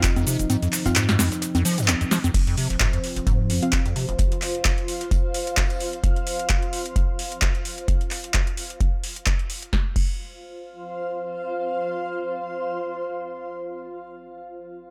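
A gritty, trippy acid house cut at 130 BPM opens on a dark, detuned sawtooth pad, soft nasal chord stabs in the background, a booming overdriven drum machine with crisp snare and metallic hats, a faint cloth-damped acoustic kit and a deep kick that drops out from 0.5 to 2.3 seconds, while a squelchy, resonant square-wave acid bass riff enters at 0.2 seconds with a filter sweep from 2.3 seconds, and a cloudy, blurred granular pad rises up front at 3.5 seconds and carries on past the point where the bass, stabs and pad have stopped.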